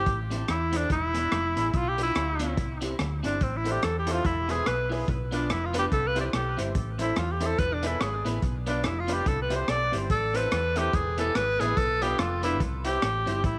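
Mischievous and driving, this swung ska excerpt is led by a breathy, whispered tenor saxophone soloing up front with vibrato and scooped notes, its line trailed by tape echo, over a round, punchy hollow-body bass and a gritty, saturated breakbeat kit of kick, hi-hat and rim click. Behind them, a slightly broken-up electric guitar colored by phaser keeps up the accompaniment, and from 3.7 seconds a brilliant, woody upright piano adds short stabs with tape echo of its own. The minor progression cycles steadily throughout, all set in a moderate echo chamber that gives the sound a roomy studio sheen.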